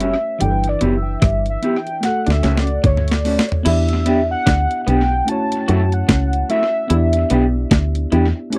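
A soft, velvety synth lead sings a longing melody through chorus and tape echo over a worn, slightly out-of-tune tine electric piano, dark clean guitar stabs, a woody, round FM bass and a crisp, overdriven 8-bit drum machine that plays a fill from 2.0 to 3.7 seconds, while a lo-fi, slightly broken-up guitar riff sits in the background from 0.4 seconds in this smooth lovers rock reggae excerpt with a dry, close 1970s-style studio sound.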